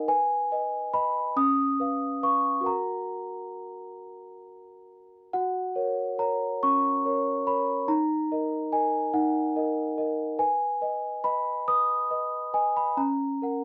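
A large celesta plays alone in this dreamy, tender classical lullaby, its bell-like, mellow tone ringing up front with the soft, vintage sound of felt hammers across a range from C#4 to D#6. Moving in a rubato 6/8 at about 45-48 dotted-quarter beats per minute in F# major, the harmony passes from G#m/B through C#7 to F#, then opens into a second section at 5.3 seconds that visits D#m before settling on F#/C#. A moderate studio reverb and a dark production frame this short cut from a longer piece.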